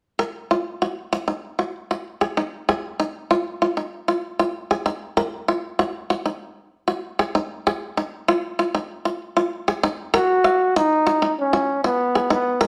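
A vibrato-laden trombone with a bright, pop-style tone enters at 10.2 seconds for a distant, roomy solo melody that sits up front over a twangy, percussive acoustic banjo, which has been playing fingerpicked arpeggios on suspended chords since the start of this intense, defiant afrobeat fragment, all captured live in one large studio room with moderate reverb.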